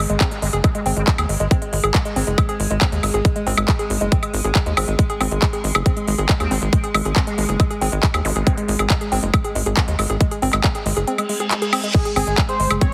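A punchy, tape-warm electronic kick sits up front in this hypnotic, alien psychedelic trance passage at 138 BPM in G# major, cut from a longer piece, alongside a tight, driving sequencer bass built from sawtooth and square waves with a filter pluck and moving notch. A big-room dance drum kit adds crisp hats, handclaps, crash cymbal and woodblock, while a woody, wave-folded pluck plays a mellow, percussive riff through chorus, digital delay and sidechain pumping. Behind them, an evolving wavetable pad holds slow-attack chords in the background, its detuned unison tones morphing under chorus, built-in reverb and pumping. A very quiet, nasal vowel-sweep wobble bass surfaces briefly as a second line, and scattered effects include a downlifter, a zap and a reverse cymbal at 11.3 seconds. At 11.9 seconds a thick, bold unison lead with vibrato enters carrying the melody through a phaser and delay, all set in light digital ambience with a heavily compressed, radio-like sound.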